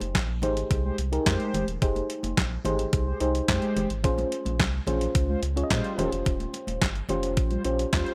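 Early-eighties boogie funk at 108 BPM in 4/4, this danceable, funky passage sits in F minor with a straight feel. A crisp 8-bit drum machine sits up front, its thumpy kick, medium-tuned snare, hi-hat and handclaps given an overdriven, sampler-style edge and the sound of a small room. High-tuned acoustic congas, played with soft hands, ring in the background. A saturated sub bass, deep and thick with a triangle tone, holds the low end beneath a mellow FM electric piano whose round, warbling, vintage voice carries chorus, tremolo and a noise layer. From 0.8 seconds a dark, brassy synth brass second line joins, its detuned sawtooth body shaped by chorus, vibrato and a filter sweep. The harmony moves from Fm9 to Bbm9 at 4.0 seconds and Eb13 at 6.0 seconds, under a light reverb.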